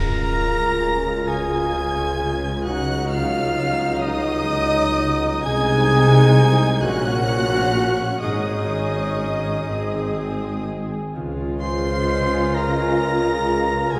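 This tender, lyrical classical passage opens with the full ensemble sounding together, a rich, close violin section carrying the melody high above a slow, rubato 6/8 pulse that breathes unevenly. Beneath it, a pure flute with vibrato and a soft attack, a dark, distant clarinet and a second violin section played sul tasto in the background weave second lines around the tune. A smooth, even viola section supplies accompaniment while a very quiet French horn section holds sustained chords from afar, and a mellow harp rings out arpeggios across a broad range at a hushed level. The low end rests on an expressive bowed double bass section, a very quiet cello section with portamento, and a tuba with a smooth top. A church reverb with a 2.6 second tail bathes the sound in a wet, spacious glow as the harmony moves through gentle inversions and a suspended chord before settling home at 11.2 seconds, the passage being cut from a longer piece.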